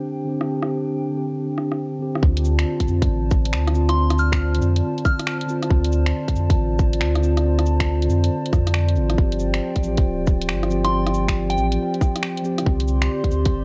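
Swung 16ths at 138 BPM drive this ghostly, rainy future garage piece in D minor, which opens with a mellow tine electric piano carrying 12-bit sampler grit and analog delay over a warbling, nostalgic tape-like pad soaked in chorus and reverb, while a garage kit of cabasa, finger snaps, hi-hat and rim clicks ticks along. At 2.2 s a tight, up-front electronic kick and a deep, round sub bass arrive as the harmony moves from Csus2 to Dm7, with bass, pad and piano pumping from the sidechain. A soft, pure FM synth bell with chorus and delay drifts in at 3.9 s and returns near the end, all set in light reverb with a muffled cassette-tape sound.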